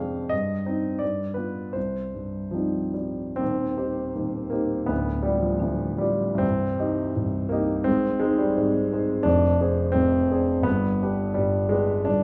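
A warm, up-front baby grand piano sits in a wet recital hall whose reverb trails for about 1.4 seconds, in this short passage cut from a longer romantic character piece for solo piano. Moving in a flexible, rubato two-beat metre, the bittersweet, stormy music reaches from low bass at C1 up to Ab5, circling minor-key harmony through G7 and Cm before a new phrase begins at 3.4 seconds. That second phrase passes through Ab and Dm7b5/F and arrives on a G chord at 10.7 seconds.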